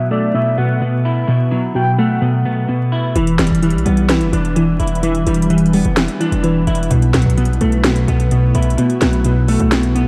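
A soft, round synth lead with a sub octave sings a brief second line for the first 2.2 seconds, over a clean, fingered electric guitar and a warbling, dusty lo-fi pluck playing detuned sawtooth arpeggios, setting an eerie tone in this half-time hip hop and trap fragment. At 3.2 seconds a punchy, saturated 808-style bass and an electronic trap kit with a sharp snare and metallic hi-hats arrive and give the beat a hard-hitting weight, and an ethereal, airy pad of sustained chords drifts in behind them from 4.4 seconds. The dark production carries light reverb, digital ambience and a layer of vinyl crackle.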